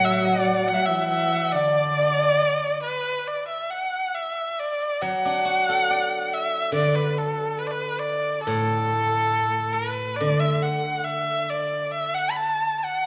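Chinese traditional chamber music in a pastoral, graceful mood and free rubato, cut from a longer piece, in which a clear, focused erhu carries the melody up front with vibrato and portamento, a dark second erhu and a woody, distant bowed cello add a brief second line that ends by 2.9 seconds, and a silvery, ringing steel-string zither played with fingerpicks accompanies, pausing after 2.4 seconds and returning at 5.0 seconds, the whole set in a wet recital-hall reverb with lossy compression artefacts.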